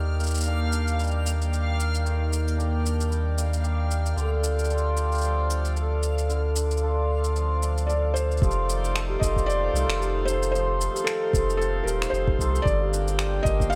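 Folktronica with a delicate, autumnal mood, heard in a short section cut from a longer piece in a lightly swung 4/4. A reedy, breathing pedal harmonium holds sustained chords throughout, while a hammered, shimmering cimbalom plays arpeggios through a low-pass filter and delay, all resting on a deep, round sub bass that sits up front. A reversed, granular texture drifts high above with its own built-in reverb until 8.4 seconds, and an overdriven electronic shaker with finger snaps enters at 0.2 seconds. A thick-felt upright piano, muted and intimate with audible action noise, takes the melody from 7.9 seconds, passed through delay. In the second section a bell-like celesta adds a quiet second line with tape echo in the background, joined by a soft, overdriven electronic kick, all set in a small room with light reverb.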